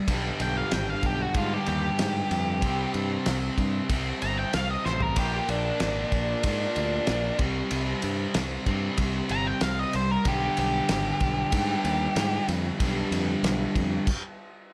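Brooding and driving, this classic rock excerpt at 94 BPM sets an overdriven, double-tracked rhythm guitar riff up front over a growling, bright fingered bass and a cloth-damped, thuddy drum kit with a fat snare, tight kick and dark cymbals, while an octave-fuzz lead guitar plays a dark, distorted solo from 0.4 seconds to 12.5 seconds, with a drum fill at 4.9 seconds, chords moving through G, C5 and Bb, light small-room ambience, and a full stop at 14.1 seconds.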